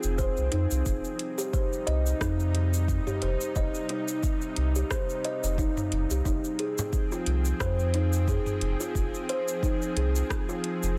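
Organic downtempo in F minor at 89 BPM, this short excerpt cut from a longer piece has a meditative mood and a gentle 16th-note swing, moving from Fm7 to Cm/F and settling on Fm at 6.3 seconds. A woody, hollow-sounding kalimba sits up front with mellow, ringing arpeggios, its tone softened by vintage 12-bit sampler grit and trailed by delay. Beneath it, a deep, round sine sub bass holds the low end with sidechain pumping, while a string-like, nasal drone of detuned sawtooth voices sustains chords with slow attack, vibrato, its own reverb, and the same gritty pumping. The rhythm comes from an overdriven electronic afro-pop kit of metallic hi-hats, rim clicks, shaker and toms, joined by a deep, overdriven electronic kick from 0.2 seconds, both set in a small room. A close, dry frame drum sounds once at 6.8 seconds, and the whole is mastered dense and heavily limited.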